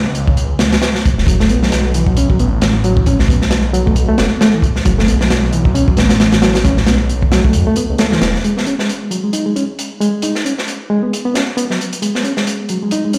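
This raw, swaggering breakbeat cut, taken from a longer piece, rides a swung sixteenth-note groove. A thick, swirling detuned saw bass with a phaser and tube saturation anchors the opening section, then drops out at 8.4 seconds. Crunchy, gritty acoustic breakbeat drums sit up front with a tight kick, a medium-tuned snare and a rolled-off top, and they carry on to the end. A reedy, bright electric piano riff enters at 1.3 seconds with fast tremolo, saturation and dub echo, and in the closing section from 8.4 seconds it runs through a filter sweep. The whole thing sounds like it's played on a big sound system in a bare room, with a large studio reverb around it.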